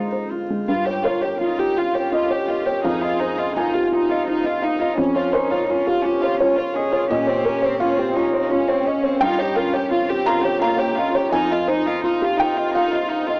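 A felt-muted upright piano, dark and intimate with audible action noise, carries the accompaniment up front in this fragile, melancholic neoclassical fragment at 84 BPM in a rubato 3/4, as a chamber violin section playing sul tasto with light vibrato takes the melody from 0.7 s, a single floating cello adds a smooth second line, and a very quiet, warbling, detuned pad holds sustained chords, with the piano, violins and cello tinted by cassette tape and the mix set in moderate spring reverb and small-room ambience with a home-cassette, small-speaker sound.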